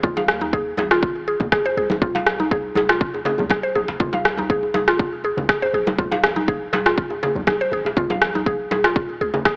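A straight pulse drives this afro house excerpt, with a punchy, layered electronic kick sitting up front and a tape-tinged electronic rim click joining at 0.3 s. Around them, close, dry congas ring at a medium tuning, while a tight, cracking djembe, compressed and saturated and played with soft hands, sits further back in the mix. A deep, boomy 808-style bass with a sine core and a noise layer gives a mellow low end, pumping with sidechain. Out front, a woody, round FM pluck with a mallet-like attack spins arpeggios through chorus, sidechain pumping and digital delay over a harmony that moves from Ab5 to Fm and then Eb5. The whole track carries light reverb and digital ambience with an AM radio character, giving the driving, warm groove a boxy, lo-fi sheen.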